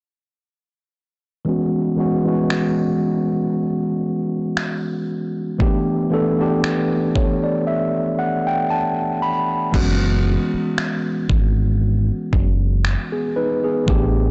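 A mellow, clean tine electric piano opens this dreamy, romantic contemporary R&B excerpt at 1.4 s, heard up front through its built-in speakers and a low-pass filter, with a filter sweep and a fill as it moves between F#9sus4 and A9sus4. A gritty, compressed sampler-style soul kit, tape-toned and re-recorded in a large room, soon joins at a slow 58 BPM with a lightly swung 16th feel, bringing a thumpy kick, finger snaps, crash cymbal and a softly clipped snare, then falls silent from 8.7 s to 9.7 s. At 9.7 s the kit returns as a dark, round, punchy fingered dub bass arrives on a return to F#9sus4, all set in light digital reverb within a blown-out, overdriven mix whose top end is dulled.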